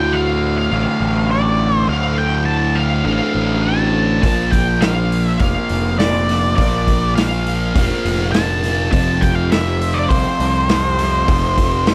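A straight 4/4 pulse at 102 BPM drives this dark, hypnotic psychedelic rock excerpt in D minor, where a bright, double-tracked fuzz guitar riff with phaser and a punchy, overdriven picked bass sit up front beneath a dusky octave-fuzz lead melody with slapback echo, while a vintage drum kit with a pumping small-room sound and rolled-off top enters at 4.2 seconds as the chords move from Dm to Bb and then F5.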